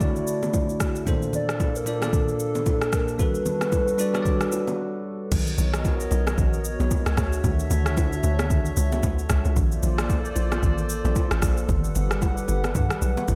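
Amapiano at 113 BPM in 4/4, with a gentle 16th-note swing, this short cut from a longer piece feels soulful and relaxed, its dreamy mix soaked in plate reverb and digital ambience. It opens with a woody, clarinet-like synth lead carrying the melody with vibrato, chorus and analog delay, over a bell-like, bright tine electric piano and a soft, flute-like pad that holds sustained chords with slow attack and long release. A smooth, electronic R&B drum kit with a soft kick, rim click, shaker and crash cymbal sits up front, its sound re-recorded in a large room, while congas and bongos add acoustic, live-room colour in the background. The lead drops out at 4.7 seconds and the electric piano at 5.3 seconds, as a brief break gives way to the drop. From 5.3 seconds a hollow, bouncy FM log drum bass takes over up front, its fast, percussive attack decaying beneath the pad, drums and percussion. 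The lush major-ninth harmony moves through Dmaj9, A#maj9, Gmaj9 and Bmaj9, keeping the mood mellow and floating.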